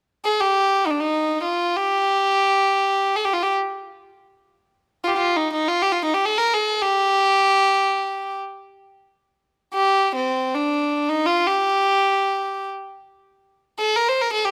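Longing and soulful, this short passage from an Arabic maqam piece unfolds in free time in G maqam bayati, tuned to A4 = 439 Hz. A single bowed violin carries the solo from 0.2 to 14.5 seconds, moving between C4 and C5 with a rich, pure, floating tone, played sul tasto with a soft attack. Close, detailed microphones keep the violin up front, and light reverb adds a touch of space around it.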